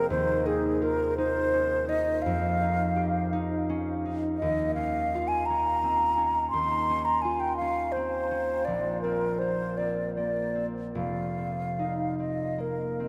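A rubato 6/8 lilt at roughly 48-58 BPM, counted in dotted quarters, carries this hazy, mysterious impressionist classical duo, cut from a longer piece, in which a mellow, hollow, airy silver concert flute sings the melody up front with vibrato and tongued notes over fingerpicked, ringing concert harp accompaniment, both playing throughout the 13.1 seconds as suspended harmonies move from Ebsus2 through Dbmaj7/Eb and Bbsus2 to a closing F5, drifting in a vast, echoing space of huge reverb.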